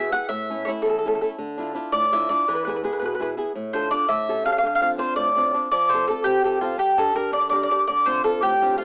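In a straight 6/8 feel, this romantic, lively Italian folk serenade sets a woody, double-strung picked mandolin melody up front over a bright, fresh-stringed flamenco guitar fingerpicked with audible finger squeaks and a cassette-tape tinge, moving into a new section at 5.7 s within a small-booth home cassette recording with a small-speaker sound.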